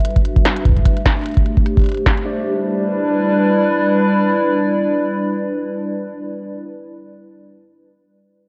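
A warbling, nostalgic pad sits up front in this short IDM excerpt, holding detuned, mellow chords from square and triangle tones with a sub octave, slow attack and long release, softened further by chorus and its own reverb. A filter sweep runs over the pad through the opening stretch as the harmony moves from Em9 to D7sus4, then settles on G6 by 2.3 seconds. An overdriven, deep analog kick enters at 0.2 seconds, up front and present, with a small-room, re-recorded character. Alongside it, an industrial electronic kit adds a clanging snare and crisp hats, both low-pass filtered and trailed by tape echo, with 16th-note swing giving the groove a playful, intricate lilt. The drums drop out around 2.2 seconds, leaving the lo-fi pad to ring on alone through a dry, gritty cassette sound with light reverb.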